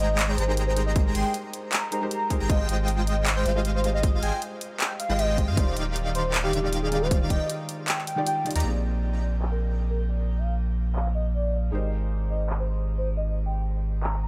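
Lush and bittersweet, this future bass passage, cut from a longer piece, moves in a half-time feel under a drop built on Abmaj7, Fm9/Ab and Ebmaj9 before turning to Bb9 and back to Abmaj7. A velvety, detuned synth lead carries the melody with vibrato, chorus, cassette-tape color and tape echo, while a soft, felt-muted upright piano adds intimate, mellow accompaniment through digital delay. Huge, full-bodied supersaw chords with a low-pass filter, along with a dreamy, airy lead spinning bright arpeggios in the background, both ride the sidechain pumping until 8.6 seconds. A thick, saturated sub bass sits deep and up front. A layered dance kit of handclaps and filtered hi-hats in studio reverb plays from the start, joined by a hard-clipped electronic kick from 1.0 seconds, with a drum fill at 8.5 seconds, all inside a digital ambience.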